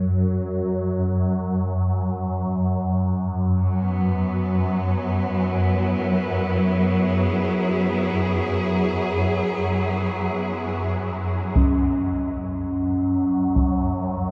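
In free time, this ominous, unsettling dark ambient drone fragment opens with a swarming, nasal, warbling synth drone that is detuned and granular, filter-swept until 11.6 seconds, beside the pure ringing of a close-miked quartz singing bowl struck with a wooden striker. At 3.6 seconds a bowed cello section enters with focused, vibrato-laden sustained chords, sounding distant in the mix, and holds until 11.6 seconds, when the harmony thins to a bare open chord. Solo taiko drums then hit with heavy sticks, compressed, saturated and muffled by a low-pass filter, all steeped in a cavernous cathedral reverb and a cassette-tape grain.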